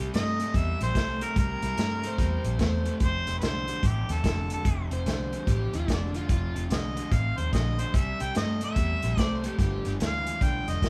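An overdriven semi-hollow guitar riff, a dark, round, foam-muted fingered bass and an overdriven slide guitar second line open this soulful electric blues shuffle at 146 BPM in C mixolydian, joined at once by a muffled, lo-fi vintage drum kit and a mellow harmonica melody with light vibrato and scooped notes, while the slide drops out at 6.6 seconds and returns briefly at 9.2 seconds, the band playing live in one room with moderate large studio reverb in this cut from a longer piece.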